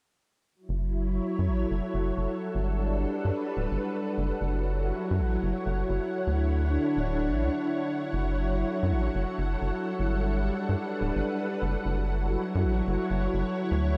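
A silky string machine enters at 0.5 seconds holding chorused chords through F#m7, Gmaj7 and Dmaj7, joined at 0.7 seconds by a rubbery, hollow square bass with tube saturation that bounces under a filter sweep until 8.0 seconds, in this glitchy, eerie IDM excerpt at 129 BPM with a swung 16th feel in F# phrygian, all soaked in a huge, dreamy reverb.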